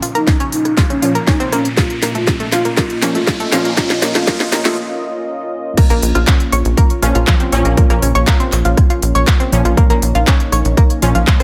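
Light reverb and a digital ambience surround this high-passed excerpt of melancholic, cinematic melodic techno, cut from a longer piece. It opens on a build-up in which a deep, moody pad holds sustained chords, a round, bright analog pluck spins arpeggios through cassette tape and tape echo, and brassy synth stabs, gritty and set in the background, sound through their own echo, while filter sweeps move across the pad, the stabs and the lead. Over this, a smooth, expressive portamento lead sings a mellow melody with vibrato and dub echo, as a drum fill and an electronic riser carry the energy until 4.8 seconds. The punchy, up-front kick, the cracking snare, crisp hats, handclaps and rim clicks of the house kit drive the groove, and sidechain pumping makes the pad, pluck, stabs, lead and bass breathe. After a short break, the drop lands at 5.8 seconds, and a tight, driving sawtooth sequencer bass with a moving notch enters at 5.9 seconds to anchor the low end beneath the pad and arpeggios.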